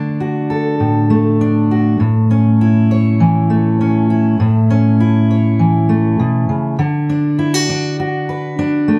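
A fingerpicked steel-string acoustic guitar carries this short folk excerpt alone, its fresh strings and full-bodied dreadnought tone sitting up front in the mix. The mood is warm and anthemic, moving at 100 BPM in a straight 4/4 feel in D major. The guitar ranges from A2 to C#5, and the harmony moves from D to A before returning to D at 6.8 seconds. At that point a new section begins and builds up through to the end at 9.0 seconds. A light reverb gives the guitar a gentle sense of space, and the piece is cut from a longer performance.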